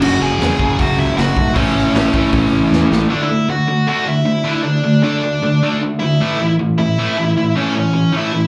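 Heard through a club PA with light room reverb, this rowdy, upbeat punk rock excerpt opens with a cranked, bright, double-tracked stack guitar riff and a dark, smooth lead guitar melody, both overdriven with slapback echo, over a growly fuzz bass and a gritty garage drum kit with punchy kick and dark cymbals that plays a fill at 2.7 s before bass and drums drop out at 3.0 s, leaving the two guitars to carry the half-time section through 8.5 s.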